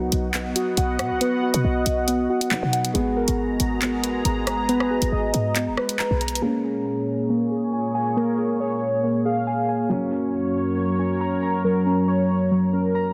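Muted, felt-like synth keys sit up front with soft, wave-folded arpeggios washed in chorus and tape echo, setting a tense, menacing tone for this half-time drill hip hop cut in Bb phrygian at 138 BPM. A dark, boxy concert grand piano lingers in the background alongside an evolving, detuned resonant pad, while a velvety, vibrato-tinged synth lead enters at 1.2 s as a second line. A punchy 808-style bass and a drill kit of bright hi-hats, handclaps and rim clicks drive the opening until both stop at 6.4 s, when a filter sweep carries the remaining parts through a dense, heavily limited modern mix.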